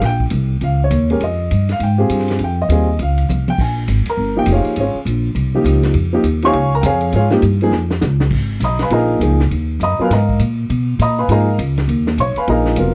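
Modal jazz at a brisk 202 BPM with a swung feel, cool and intense, this short excerpt is cut from a longer piece and settles into G# dorian from 8.3 s. A baby grand piano comps with open, long-sustaining chords up front, while a woody pizzicato upright bass on steel strings anchors the low end beside it. Further back, a vintage acoustic drum kit with a punchy kick, medium-tuned snare and rolled-off top plays fills at 3.3 s and just before 8.3 s, all caught in a dry, close 1970s-style studio sound.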